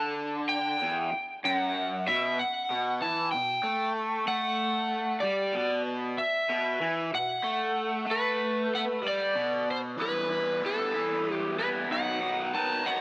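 An overdriven slide guitar carries the melody in this mysterious, hypnotic rock excerpt, played with fingerpicks, sitting up front and trailed by tape echo across its upper register. Beneath it, a raw garage guitar picks a riff in the low and middle range, its bright, lo-fi tone double-tracked and colored by overdrive and a phaser. Both guitars run together from the opening to 13.0 s, moving in a lilting 6/8 with a straight feel. The harmony settles on E minor seventh and B power chords before shifting at 10.0 s to a new passage built on E minor and B. A moderate plate reverb with a long tail wraps the two guitars in a shadowy space, and the clip is cut from a longer piece.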